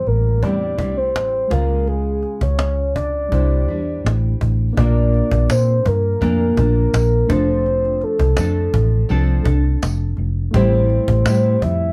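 A small room with a short, moderate reverb frames this laid-back, dreamy indie and bedroom pop excerpt at 83 BPM in Bb lydian, where a full, round synth lead with a sub octave, chorus and vibrato carries the melody up front. Fingerpicked nylon-string guitar with audible finger squeak and a vibrato effect, a reedy, worn and slightly out-of-tune electric piano in the background, and a dark, foam-muted, punchy fingered bass support it, while a woody cajon played with hard hands keeps time close and dry. A jingly tambourine enters at 5.5 s, sitting in the background as the chords move from Am7 and Db toward Bb and F6.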